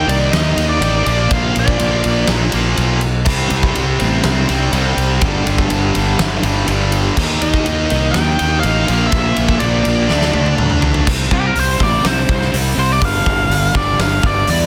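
Hard rock at 123 BPM in a straight 4/4, energetic and powerful, cut from a longer piece. A biting, overdriven lead guitar with digital delay plays melody in the opening 2.3 seconds, drops out, then returns at 7.4 seconds and carries on into a solo from 11.1 seconds to the end. Beneath it, two bright distorted rhythm guitars pick out riffs, one compressed and sitting in the background throughout, the other tight and running until 11.1 seconds. A fuzzy, growly fingered bass sits up front with the big acoustic drum kit, whose fat snare and punchy kick drive the groove across crash, ride, hi-hat and toms, with a fill from 10.1 to 11.1 seconds leading into the solo. Power chords such as Eb5, C5, G5 and D5 anchor the progression, and the dense, heavily limited modern master carries light reverb and small-room ambience.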